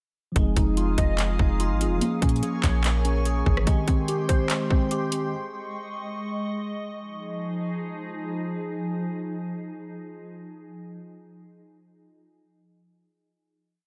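A mellow tine electric piano opens this menacing, hard-hitting trap piece at 0.3 s with held, open-voiced chords repeated like a sampled loop, soon joined by airy digital keys playing chorused, delayed eighth-note arpeggios, a deep, boomy 808-style bass with pitch slides following the kick, and an up-front half-time drum kit of hard-clipped kick, metallic hats in fast rolls, handclaps and rim clicks, while a glassy, ethereal FM pad with slow attack and ensemble chorus carries on alone once the other parts stop by 5.3 s, ringing out on a final chord until 10.3 s.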